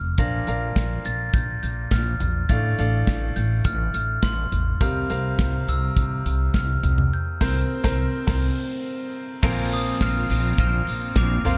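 Piano-driven pop at 104 BPM with a hopeful, anthemic mood, in which a bright upright piano with audible action noise lays down chords under a bell-like glockenspiel melody played with soft plastic mallets, while a woody, growly pizzicato upright bass and a punchy, up-front studio drum kit with bright cymbals anchor the groove, a jingly tambourine sits distant in the background, the band hits an accent from 7.1 to 9.4 seconds, and a twangy, clean twelve-string electric guitar riff with ensemble chorus enters at 9.4 seconds in this small-room cut from a longer piece.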